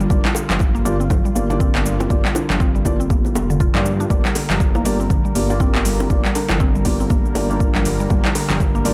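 Driving and earthy, this short cut from a longer afro house piece moves at 120 BPM in 4/4 with a swung sixteenth-note feel, resting on a single G minor seventh chord in G minor. A punchy, overdriven electronic kick sits at the front, joined by a layered deep house kit of cabasa, handclaps and metallic hi-hats that also carries overdrive. High-tuned acoustic congas, close and dry under soft hands, add very quiet, ringing hand-drum detail, while tight, high-tuned bongos that enter at 0.3 s sit in the background. Underneath, a dark, rumbling detuned saw bass pumps against the kick, while a felt-muted upright piano plays soft, intimate stabs trailed by dub echo. In the background, a woody, round mallet-like synth pluck spins arpeggios with chorus and dub echo, and a smooth, warbling vintage analog pad holds lush chorused chords, all sitting in a digital ambience.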